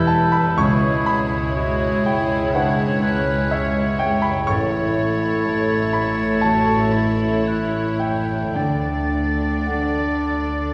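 A natural-toned baby grand piano leads the accompaniment in this bittersweet, sorrowful cinematic orchestral excerpt, flowing in rubato beneath a rich studio violin section that carries the melody with light vibrato and soft sul tasto bowing, while a clear, present oboe, an airy straight-toned flute, a warm vintage clarinet and a background chamber violin section weave second lines, a very quiet floating viola section and a ringing fingerpicked harp add texture, a distant mellow French horn section holds sustained chords, and smooth-topped cello and double bass sections anchor the low end, the ensemble heard from further back in a wet scoring-stage reverb.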